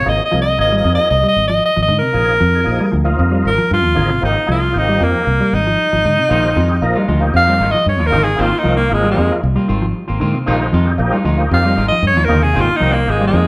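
Afrobeat at 115 BPM with a light sixteenth-note swing, hypnotic and joyful, as an edgy, punchy alto saxophone solos up front with vibrato over a round, foam-muted fingered bass, a mellow clean guitar's background arpeggios treated with spring reverb and tape echo, and a thick, lightly overdriven tonewheel organ with key click, chorus vibrato and slow rotary speaker, before a bright semi-hollow guitar adds picked stabs at 6.3 seconds, all captured live in one room with a wet stone reverb over an Ab69 to Bb7sus4 vamp in this excerpt from a longer piece.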